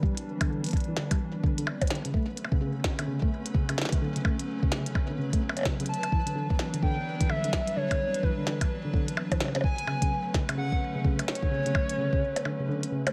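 A hollow, flute-like pad with chorus and 12-bit sampler grit holds sustained chords over clean tine electric piano arpeggios played through a combo amp with tape echo, a soft, up-front electronic kick and a very quiet, flickering granular texture, as a glitchy kit of clicky hats, percussion blips and a tiny snare joins to set an eerie, intricate, swung IDM groove, and at 5.9 s a warbling, nostalgic, wave-folded lead with vibrato takes the melody before a brief break at 12.5 s closes this cut from a longer piece.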